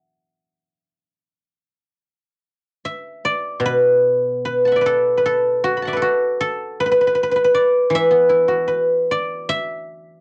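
Chinese traditional solo plucked-string music, flowing and elegant, with a rubato feel, heard as a short excerpt cut from a longer piece. A single guzheng, played with fingerpicks, sits up front with a mellow, silvery, ringing tone across a span from B2 to B5, shifting into a new section at 3.2 seconds. The home cassette recording carries a light reverb and a soft, rolled-off top end that lends the sound a gentle haze.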